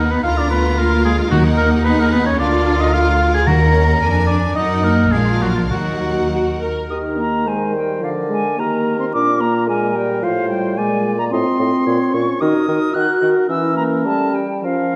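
A quick, restless classical-period orchestral movement opens in E-flat minor, its strings pressing forward at roughly 98 to 113 BPM in 2/4 with an urgent, rubato feel. A clear, intense violin section carries the high melody over a rich second violin line set in the background, while a lush, distant viola section fills in the accompaniment and a focused double bass section, placed up front, anchors the bass alongside an expressive cello section. A warm, close-miked oboe weaves a second line through the whole passage, and timpani struck with medium mallets on calf heads sit in the background from 1.3 s. At 6.9 s the music turns to E-flat major as the strings fall away, and a mellow clarinet, a pure, silvery flute and an up-front bassoon take over alongside the oboe, with a dark, roomy French horn section holding sustained chords. The harmony darkens again toward the end, passing through B-flat minor and E-flat minor to a diminished chord, all heard in a wet scoring-stage reverb with a dark, warm production, as a fragment cut from a longer piece.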